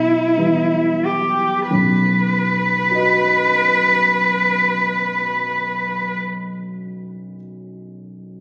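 A bowed cello sings a warm, expressive melody with vibrato and portamento until 6.1 s over a dark, mellow grand piano accompaniment that continues to 8.4 s, in this serene romantic classical excerpt in B major, a slow rubato 4/4 at 42-50 BPM that slows down over the opening 1.7 s as an Em/B chord gives way to B, heard through moderate scoring-stage reverb and captured on a phone in the room with club reverb and compression.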